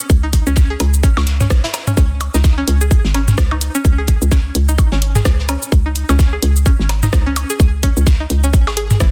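A tight, up-front electronic kick drives this minimal techno excerpt at 128 BPM in 4/4, with a 58% swing on the sixteenths giving the groove a slightly loping, quirky feel. Around it, a layered garage kit adds warm hats, rim clicks and shaker, while a distant, roomy jazz brush kit sits in the background with filtered hats and a medium-tuned, softly clipped snare. A hollow, bouncy FM bass ranging from G#1 to C#2 sits up front, punchy and mellow, with tube saturation and sidechain pumping. From 0.2 seconds, a bright, twangy, string-like resonator pluck between C#4 and G#4 cuts through on a C#5 harmony, its sawtooth body and noise layer moving with a filter sweep and coloured by chorus, phaser, digital delay and pumping. Overdriven electronic blips and toms arrive at 0.8 seconds with tape echo, and the whole piece, tuned to A4 = 439 Hz, lands with a clinical, dense and heavily limited modern sheen in a digital ambience.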